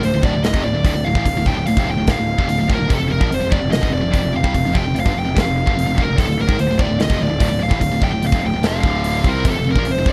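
An aggressive, heavy metal excerpt opens with every part at once: a big, up-front acoustic drum kit with punchy kick, medium-tuned snare and hi-hat drives a pair of bright, picked distorted rhythm guitars playing a low riff in the background, one tight and one high-gain. A growly, fuzz-laden picked electric bass holds down the low end, while a dark, high-gain lead guitar carries the melody above, all moving between D minor and F power chords. The production is dark and dry, with the drums sitting loudest in the mix.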